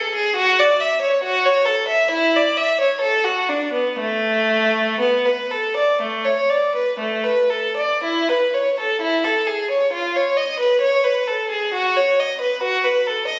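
Serene and radiant, this short classical excerpt from a baroque-style suite movement for unaccompanied violin unfolds in a free, rubato 4/4, with a single bowed violin played up front in period style, its reedy, nasal gut-string tone touched with light vibrato, ranging from A3 to E5 and blooming into a recital hall's wet reverb beneath vinyl crackle and the character of a phone recording made in the room.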